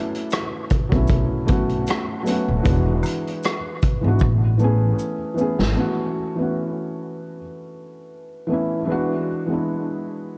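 An echo-heavy mix with a small-room ambience frames this nostalgic, mellow lo-fi hip hop fragment with a gentle swing. A soft, felt-muted upright piano, coloured by cassette tape, a low-pass filter and dub echo, sits up front with audible action noise. Beside it are a punchy vintage drum kit with 12-bit sampler grit, a woody, thumpy pizzicato upright bass, and maracas and woodblock in the background. The drums play a fill from 4.2 seconds, and from 5.8 seconds the intimate piano carries on alone.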